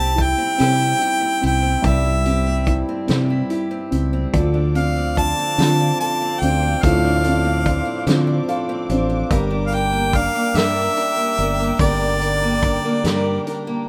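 Reflective and heartbroken, this excerpt from an acoustic folk-pop ballad in D minor moves slowly at 48 BPM in a straight 6/8, with a clear, close-miked harmonica singing the melody up front with light vibrato and scooped notes. A soft, felt-muted upright piano and a bright, boxy parlour guitar picking arpeggios, finger squeak audible, fill the middle, while a round, dark fingered electric bass sits up front and a loose indie drum kit adds a punchy kick, rim clicks and gritty, saturated hits with a rolled-off top. At 4.3 seconds a dark chamber string section enters in the background with smooth bowed chords, as the harmony moves from C to Dm7 and then Gm in a dry, intimate sound.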